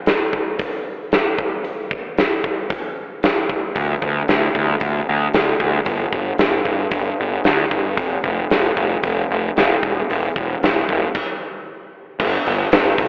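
A huge, up-front arena drum kit with bright cymbals, a punchy kick and a medium-tuned snare drives this anthemic, restless quiet-loud alternative rock excerpt at 114 BPM in 4/4, joined at 3.8 seconds by a fuzzy, overdriven picked electric bass ranging from E1 to D2, before a stop from 11.1 to 12.2 seconds, with the whole mix colored by a thin telephone-like tone and light reverb.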